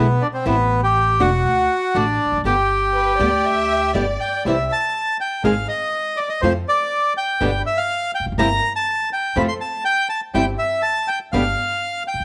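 Light reverb and a small-room ambience frame this playful, elegant tango at 121 BPM, played rubato in 4/4. A reedy, bright, airy bandoneon carries the melody up front, over fingerpicked acoustic flamenco guitar and a woody, pizzicato upright bass. A smooth, vibrato-rich violin section adds a brief second line from 2.9 seconds, and veiled, dark, con sordino chamber strings enter with background stabs at 4.4 seconds, as the key moves from G major to C major in this fragment of a longer piece.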